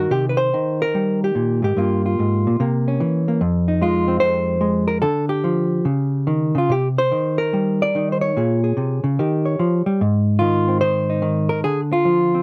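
Solo jazz in C minor at 146 BPM, with a playful, swinging feel played with rubato, heard in this 12.4-second excerpt from a longer piece. A clean, dark electric hollow-body guitar, fingered and compressed, sits up front and plays alone throughout, ranging from F2 to D5 over changes such as Cm7, C7b9, Dbsus2, Bbm9 and Eb9 before settling on a Ddim. Close, detailed microphones and light reverb give the guitar an intimate presence.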